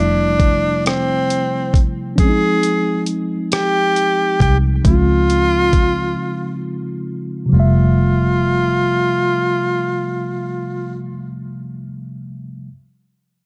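This slow R&B piece in a six-eight lilt moves at 45 BPM with a sensual, warm mood and a dark, warm production in a small room. A clear, punchy tenor saxophone carries the melody up front, close-miked with pop-style vibrato and a plate reverb. A mellow, clean tine electric piano accompanies it, also sitting forward in the mix with its own plate reverb, as the harmony moves from Fmaj9 to Dbmaj9 and back to Fmaj9. Underneath, a vintage foam-muted fingered electric bass gives a round, amped low end. A gritty, compressed sampler-style soul drum kit, with a thumpy kick, hi-hat and rim click, enters at 0.4 seconds and drops out at 5.9 seconds, leading into a short break before the second section. The saxophone and bass finish together, and from 11.0 seconds the electric piano rings on alone until this cut-off fragment of a longer piece ends.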